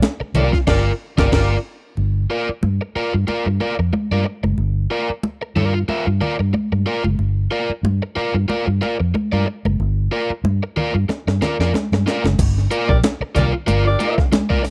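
Funk at 92 BPM in G minor, cool and hypnotic, cut from a longer piece: a dark, round, foam-muted bass sits up front with crunchy overdriven guitar over high-tuned, thin-skinned congas that run to 14.5 seconds, while a gritty, pitched-up breakbeat kit with a thumpy kick opens with a band accent from 0.7 seconds, drops out, then returns with a fill at 11.1 seconds as a tight horn section with light vibrato and octave doubling closes things out in a dry, close 1970s-style studio sound.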